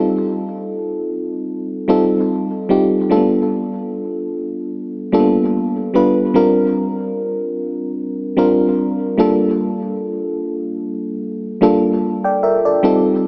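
This recording has a small-speaker character, set in a moderate plate reverb with a long 3.0-second tail. It is a late-night, moody R&B excerpt in 4/4 with a light sixteenth-note swing, and a lone FM electric piano carries the whole passage. The piano sits up front. Each note starts with a fast attack, then decays into a mellow, warbling vintage tone with a noise layer beneath it. Tape echo trails its notes, which range from G3 to G5. The harmony moves from F7 to G7 at 3.1 seconds, then through C7sus4 to Gm7 at 9.2 seconds.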